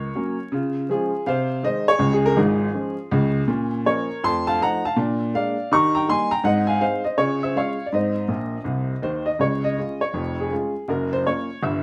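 Vinyl crackle and a moderate studio reverb give this short stride jazz passage, cut from a longer piece, the air of an old record. A lone upright piano carries everything, placed up front with a woody, boxy tone, long sustain and audible action noise that make it feel intimate. The mood is exuberant and swinging, with a lilting swung feel in 4/4 and the piano ranging from deep bass notes to bright upper-register figures. After an opening built on a brief run of chords, the harmony moves through a chain of dominant sevenths before settling home. A fill from 8.3 seconds leads into a new section at 9.4 seconds, which ends on a major seventh chord as the passage breaks off.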